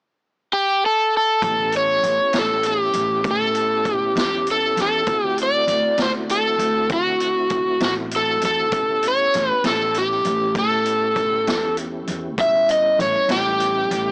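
A laid-back, swaggering slow blues in 12/8 at 66 BPM in A mixolydian, this blown-out, overdriven cut from a longer piece opens with an up-front, fingerpicked slide guitar carrying the melody alone from 0.5 seconds before a soft, flute-like tonewheel organ with chorus vibrato and key click, a woody pizzicato upright bass with tube saturation, and a punchy, rolled-off vintage kit of hi-hat, snare and softly clipped kick join at 1.4 seconds over A7, D7 and back to A7, all through a small speaker sound with little reverb.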